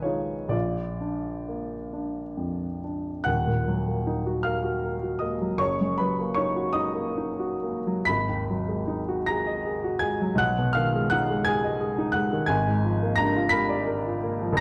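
A warm, up-front baby grand piano sits in a moderate recital hall reverb within a dark, warm production, its tone warm and present. This mournful, wistful romantic nocturne in Eb minor moves in a slow, rubato 6/8 at roughly 40-59 BPM in dotted quarters, with the solo piano spanning Eb1 to Cb7. After a brief opening, a longer passage begins at 3.3 seconds on Eb minor and drifts through Ab minor colours toward a Bb7 over Ab at 12.5 seconds before this excerpt from a longer piece breaks off.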